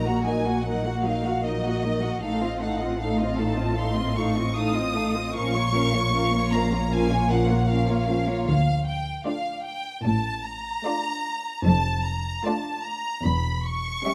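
In a rubato 4/4, this elegiac, yearning slow romantic movement for string orchestra, cut from a longer piece, sets an up-front, focused violin melody over a smooth, distant second violin line, warm viola accompaniment with expressive portamento, and a dark, lush cello section and rich double bass section together carrying the bass, every section bowed with vibrato in a moderate scoring-stage reverb caught by close, detailed microphones, as the harmony turns to a new key at 8.5 seconds.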